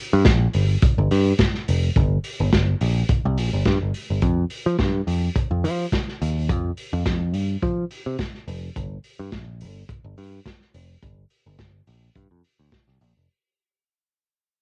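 A driving, sultry disco groove in G minor at 106 BPM, tuned slightly flat of standard pitch and cut from a longer piece, fading out across its full 13.3 seconds. A picked electric bass sits up front with a warm, direct tone, while a vintage acoustic drum kit of hi-hat, punchy kick and medium-tuned snare sounds muffled and lo-fi, its top rolled off as if in a small room. Light reverb and the grain of a home cassette recording give the whole piece a homespun feel.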